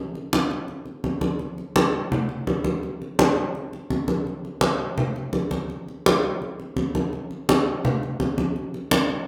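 Bright, thin-skinned congas enter at 0.2 s and carry this sultry Latin fragment alone at a brisk 168 BPM in a straight 4/4. The medium-tuned drums are played with soft hands and sit up front, though a large, wet studio room gives them a distant bloom. The live, one-room sound keeps the brief passage warm and intimate until it cuts off at 9.3 s.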